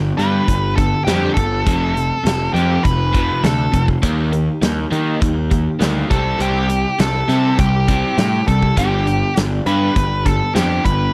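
Sunny and driving, this classic rock excerpt rides a G, F, E-flat, C progression, with a growly, punchy fuzz bass up front, a crunchy double-tracked overdriven guitar riff, a dark octave-fuzz lead melody with tape echo entering at 0.2 seconds alongside a huge arena drum kit of punchy kick, medium-tuned snare and hi-hat, and a very quiet, full-bodied jumbo steel-string acoustic with finger squeak, all captured in a dry, close 1970s-style studio sound.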